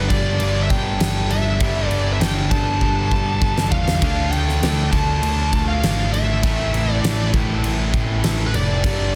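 A dense, heavily limited modern master with little reverb gives this short hard rock cut from a longer piece a close, menacing, aggressive sound in a straight 4/4. A huge arena drum kit sits up front with a punchy kick, a fat snare and crash cymbal, playing a fill from 2.8 to 4.0 seconds, while a round, dark picked electric bass pushes hard beneath it. Three rhythm guitars stack the riff behind them: a cranked stack guitar with overdrive, a scooped high-gain guitar with distortion, and a very quiet, double-tracked tight distorted guitar. Over the top, a bright high-gain lead guitar carries the melody through distortion and digital delay. Far back, a very quiet overdriven tonewheel organ holds gritty, thick sustained chords with key click, percussion and a slow rotary speaker, as the harmony moves from G to D minor at 4.0 seconds and to A minor at 6.4 seconds.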